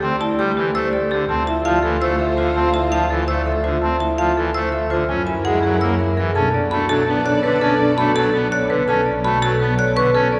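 Pulsing in a straight 7/8 at 332 eighths per minute, this hypnotic, meditative excerpt of minimalist classical pattern music sets a woody, hard-mallet marimba melody over ringing vibraphone arpeggios with motor vibrato, sharp xylophone arpeggios entering at 0.2 s, a brassy trumpet-stop pipe organ accompaniment and a clear, bowed chamber double bass section, while a mellow French horn second line and lush sustained strings sit in the background from 1.3 s, all heard from further back in a cathedral's long reverb as the harmony settles into B minor at 6.4 s.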